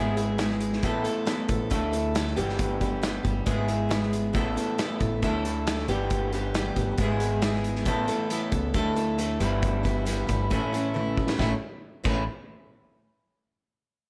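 Moderate large studio reverb surrounds this nostalgic, jangly folk rock and heartland rock excerpt at 136 BPM in A major, where a bright, twangy electric guitar through a small old amp plays an up-front riff with subtle chorus over a boxy, picked steel-string acoustic guitar, a woody, thumpy pizzicato upright bass and a gritty, punchy loose indie drum kit with dark cymbals that enters at 0.2 s, as the chords cycle through E/G#, Asus2, Dsus2 and G6, land on A at 10.5 s, and a drum fill at 10.9 s leads into a new section.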